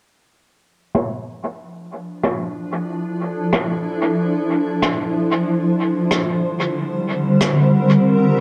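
Ambient dub in a deep, meditative mood, cut from a longer piece and built on a cloudy, blurred granular pad that fades in and holds sustained chords moving from Dm9 to C7sus4/D, sitting bright and up front with its own reverb. A natural, brush-played rim click enters at 0.9 seconds, run through a filter sweep, low-pass filtering and dub echo. The echo-heavy mix sits in a small room with moderate spring reverb.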